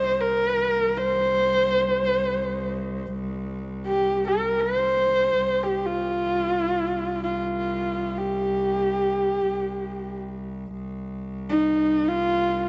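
Heard through the muffled, dulled top end of cassette tape and a wet studio reverb, this fragment of a longer Mongolian folk piece unfolds in free time in the C yu mode, with a vast, windswept mood. A husky, boxy horsehead fiddle sits up front carrying the bowed melody between Eb4 and C5, its focused tone shaped by vibrato, portamento and a tape echo. Beneath it, a smooth cello holds a quieter, close, bowed drone on C2 with vibrato throughout, and the music slows down from 10.7 seconds to the end at 12.7 seconds.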